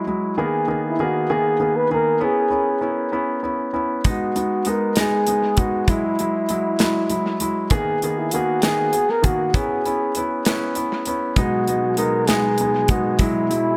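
A tender, swaying pop ballad in a slow six-eight lilt at 66 BPM in B major, where a breathy, dark flugelhorn carries the melody with soft attacks, scooped notes and light vibrato through an analog delay, over an intimate grand piano whose action noise can be heard. Drums from a polished studio kit, with a tight kick, medium-tuned snare and hi-hat, enter at 4.0 seconds with their own analog delay, and a lightly overdriven tonewheel organ on fast rotary speaker adds sustained chords from 11.4 seconds. The echo-heavy mix sits in a small room with light reverb, cycling through chords such as C#m7, B6 and Eadd9 in this excerpt from a longer piece.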